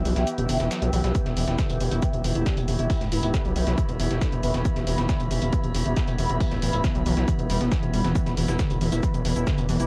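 This driving, intense peak-time techno excerpt in E minor at 137 BPM opens on an up-front, saturated sawtooth synth bass that pumps against the beat, with an eerie, metallic FM drone and an airy, breathy pad with chorus and phaser sitting behind it. A screaming, guitar-like lead riff, distorted and thick with phaser, chorus and delay, stays in the background, while a dusty sampler-style kit and overdriven electronic hats and shaker fill in the top. A heavy, overdriven kick enters at 1.1 seconds, and the whole home cassette recording is dry.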